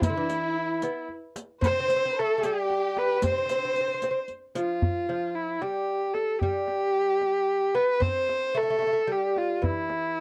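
Festive and passionate, this Persian modal ensemble piece in C dastgah mahur moves at 75 BPM in a straight 6/8, cut from a longer work and captured in a dry, close 1970s-style studio with light reverb. Up front, a single rich, focused kamancheh carries the bowed melody with vibrato and portamento. Beneath it, a delicate fingerpicked gut-string lute plays a second line and a deep tombak, struck with soft hands, runs nearly throughout, while a warm bowed violin section in the background adds its own expressive second line until 4.3 seconds and a riq with dark jingles plays until 4.7 seconds.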